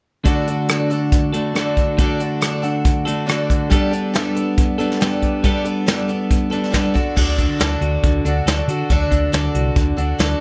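A lightly reverberant, open-road folk rock and heartland rock excerpt in D major at 139 BPM, where a shimmering, octave-doubled picked twelve-string acoustic guitar rings under a twangy, compressed clean electric guitar riff and an up-front brushed drum kit with a punchy kick, moving from D to Gadd9 and back before a round, dark hollow-body bass enters at 7.2 seconds.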